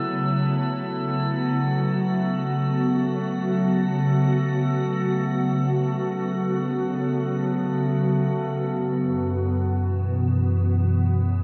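A soft, organ-like pad anchors this serene ambient excerpt in free time, holding a sustained F#m7 chord up front with a pure, mellow tone that slowly evolves under ensemble chorus. A very quiet FM bell traces gentle arpeggios on F#4 while a glassy texture of drifting overtones hovers alongside, both falling away at 8.8 seconds so the pad sustains alone until 11.4 seconds. The whole mix is soaked in a lush hall reverb, giving it a dreamy, spacious feel.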